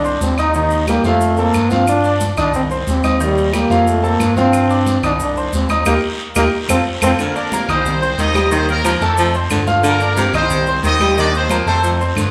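Salsa at 181 BPM, fiery and danceable, in which a punchy, up-front trombone carries the melody until 7.1 s over a brilliant concert grand piano, a thick, growling FM bass, high-tuned congas, grainy maracas, a raspy, distant guiro and woody claves, with a band accent at 5.9 s before a roomy horn section takes up the tune at 7.2 s beside a breathy, intimate baritone saxophone line, the whole band playing live in one reverberant large room over chords moving through Cm, Eb and F.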